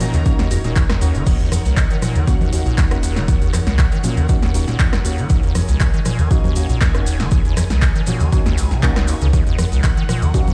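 Hypnotic and trippy, this acid house excerpt at 119 BPM rests on a single Ebm7 chord in Eb minor, driven by an overdriven, up-front kick and a punchy analog drum machine of snare, handclaps, hi-hat, rim click, congas and crash, with a grainy cabasa in the background. A squelchy, resonant square-wave acid bass riff and a round sine sub bass, both tube-saturated and pumping, anchor the low end, while a lush vintage string machine holds sustained chords through ensemble chorus. Dark, detuned, ring-modulated chord stabs with tape echo sit in the middle, and the mix sounds as if played on a big sound system in a bare stone room.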